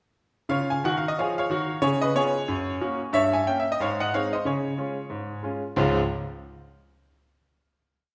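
A bright concert grand piano opens at 0.5 s, playing solo stride jazz in Db major at a brisk 182 BPM with a swung feel. Its stride bass runs deep in the low register while the tune sounds in thirds, moving through Db, Db7, Gb, Gdim7 and Ab before landing back on Db. This whole short piece is exuberant and playful, with a brilliant, natural, up-front piano tone set in a generous large-studio reverb that gives it a live-room feel, and the piano ends at 6.0 s on a final chord.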